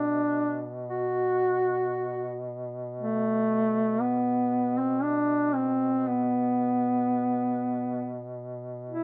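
In free time, this mournful, solemn Caucasian folk lament in B phrygian unfolds for nine seconds, cut from a longer piece. A mellow duduk sits up front with the melody between A3 and F#4, playing scooped notes with a distant, roomy folk-style tone, while a second, quieter duduk holds a drone on B2 beneath it, both playing with vibrato. The recording was made outdoors and has little reverb.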